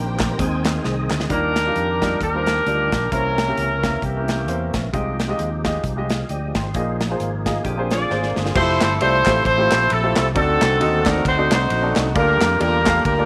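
Uptempo gospel at 132 BPM with a hopeful, soulful swing, built on woody upright piano, a lightly overdriven tonewheel organ with key click and slow rotary, a punchy fingered electric bass and a polished, airy drum kit, while distant bowed strings and hollow group handclaps open the excerpt before a clear, up-front horn section takes the melody at 1.3 seconds, a very quiet clean picked guitar slips in briefly, and the music lifts from Eb major into F major at 8.6 seconds with the handclaps returning.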